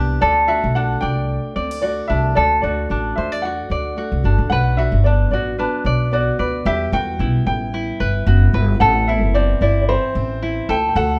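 A light, fingerpicked tenor ukulele and a thumpy, dark pizzicato upright bass sit up front as a full-bodied, fingerpicked steel-string acoustic guitar plays arpeggios beneath them, and at 0.2 seconds a smooth, vintage upright piano takes the melody in this easy-going, sunny acoustic pop piece, played live by a band in one room with moderate studio reverb and moving from D through Bm, Emadd9 and Amadd9 back to D.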